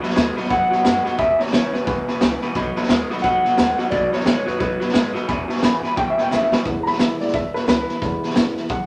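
Retro and rowdy, this rockabilly excerpt swings at 176 BPM in E major, driven by a gritty, saturated garage drum kit up front with a punchy kick, over a thumpy gut-string upright bass in the background, a very quiet dreadnought acoustic guitar and a woody upright piano. A dark, slightly broken-up electric guitar riff runs under a twangy, lo-fi lead on a second small-amp electric guitar with harmonic tremolo, until a drum fill at 6.3 seconds leads into an upright piano solo from 6.7 seconds. A moderate club reverb surrounds the band as the chords move between B7 and E.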